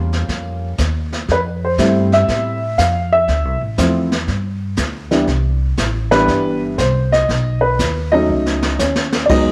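A moderate plate reverb and studio ambience surround this relaxed, sophisticated jazz piano trio, a short cut from a longer piece with a swung 4/4 feel. A dark, woody upright piano sits up front and carries the melody, its slightly detuned tone and short sustain giving the lines an intimate, worn character. Beside it, a pizzicato upright bass with steel strings plays the low line, also up front, sounding dark and woody. The brushed drum kit, entering at 0.1 seconds, sounds distant and roomy, with dark cymbals, a high-tuned snare, a boomy kick and a rolled-off top, and it plays a fill from 8.3 to 9.3 seconds. The harmony moves through rich extended chords such as Eb9, Fmaj7, Dm9 and Cmaj9 before landing on B9.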